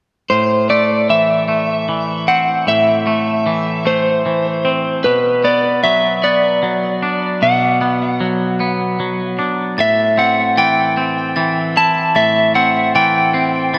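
Melancholic and cinematic, this short rock fragment in a slow 6/8 sets a warm, slightly broken-up slide guitar melody played with fingerpicks up front over bright, twangy picked electric guitar arpeggios, both carrying slapback echo and analog delay, while a sparkling glockenspiel struck with hard plastic mallets joins in the background at 9.8 seconds, all inside a lush hall reverb that gives a big arena sound as the chords move from Am to Bm and back.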